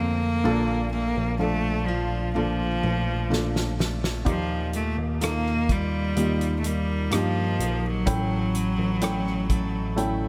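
A single bright, biting cello carries the melody up front in this heartfelt, hopeful pop ballad, its close, nasal tone edged with vibrato and an airy bow. Beneath it, a soft, felt-muted upright piano supplies mellow, intimate accompaniment, its action noise audible. A picked jumbo steel-string acoustic guitar adds full-bodied arpeggios in the background, while a bell-like tine electric piano holds down the bass with a clean, direct sound. The natural country drum kit enters at 3.3 seconds with a fill, then settles into hi-hat, punchy kick, rim click and a fat snare in a small room. The harmony moves from Bbmaj7 through Ebadd9 to A7, all under light reverb, and this excerpt from a longer piece closes on a brief felt piano fill at 10.0 seconds.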